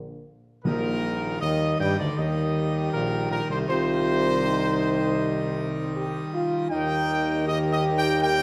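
Low brass opens this solemn, regal classical excerpt in Eb major: a clear, tight trombone section holds sustained chords in the background while a warm, distant tuba with light vibrato carries the bass line in a roomy space. Within the first second a bright trumpet section takes the melody up front, a majestic full pipe organ with brilliant mixtures and romantic voicing joins the sustained harmony, and timpani struck with soft mallets add round accents until 1.8 seconds. At 2.2 seconds a mellow French horn section fills in the middle of the chords. The tempo is a stately 79 BPM in a straight 4/4, with the harmony moving from Bb through Eb/Bb and Cm before settling on Eb. A wet recital hall reverb surrounds the ensemble, giving the passage a grand, ceremonial breadth as it continues beyond the cut.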